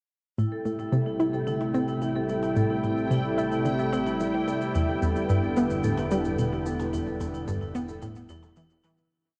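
From 0.4 s, this mysterious, cosmic piece of sequencer-driven space music at 110 BPM in 4/4 spreads a lush, detuned unison pad across Am7 and Em7 chords in E minor, while a round analog pluck repeats an 8-step sequence, a hard-mallet vibraphone rings a metallic 3-step arpeggio loop that drifts against the bar under a filter sweep, a bubbling, resonant texture holds a high G5, and a fat, saturated bass and a light machine pulse of shaker and low woodblock fade in, the whole mix swimming in a huge ambient reverb and worn cassette warble before fading out from 6.2 s.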